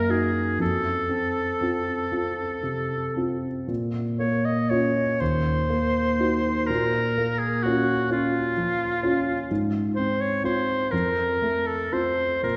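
An oboe with light vibrato and a smooth, warm top sings a melancholic, yearning melody over a dark, mellow grand piano accompaniment with deep bass and audible action noise, both heard from the start. This brief, rubato romantic classical passage moves slowly in 6/8 at about 38-43 BPM, with harmony drifting from Ebm/Gb through Bbm and Fm/Ab before settling on F. Both instruments sit up front yet carry a wet concert hall reverb, heard from further back in the room, which gives the intimate, vintage-toned duo a spacious glow.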